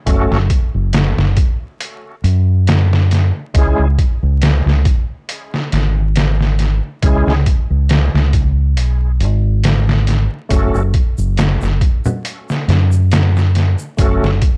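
A dry, gritty hardware sound with transformer saturation and vinyl crackle frames this dark, hypnotic trip hop fragment, cut from a longer piece and set in a digital ambience. A compressed, pitched-down sampler-style drum kit sits up front with a thumpy kick, a medium-tuned snare and hi-hat, carrying a light swing in studio ambience. Beside it, a deep dub bass, fingered and round, is direct and amped and placed up front in the mix. Lower in level, a reedy, bright tonewheel organ with key click plays the accompaniment through light overdrive, chorus vibrato, a fast rotary speaker, harmonic tremolo and tape echo. The harmony moves from F#m to C#5 at 3.6 seconds and returns to F#m at 10.5 seconds, where a soft-handed egg shaker and ringing acoustic congas join, close and dry.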